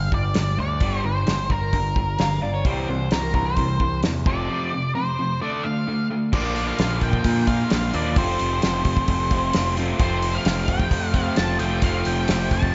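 A damped 70s drum kit with a fat snare and tight kick sits up front in this brooding, driving classic rock excerpt, alongside a distorted electric guitar riff with slapback echo, a bright, growling overdriven bass and a dark octave-fuzz lead guitar melody, while a raw garage guitar adds a brief second line at 2.2 seconds and an overdriven electric guitar riff enters in the background at 6.3 seconds, inside a big arena-sized reverb.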